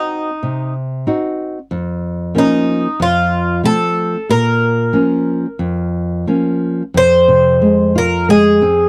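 The rhythm moves freely in a rubato 4/4 around 92 BPM, giving this fado-style ballad in Bb harmonic minor a longing, passionate sway, tuned slightly low to A4 = 439 Hz. An Irish bouzouki carries the melody from 0.0 to 8.9 seconds, its picked double strings ringing warm and metallic in the upper-middle register. Beneath it, a nylon-string guitar plays a dark, small-sounding fingerpicked accompaniment that reaches down into the low register, and both instruments sit up front. The harmony passes through Cdim, Bbm/F, F and Bbm before a new section opens at 6.9 seconds on Fm, and the passage is cut from a longer piece. The sound is a dry, close 1970s-style studio recording with light reverb and a faint mains hum.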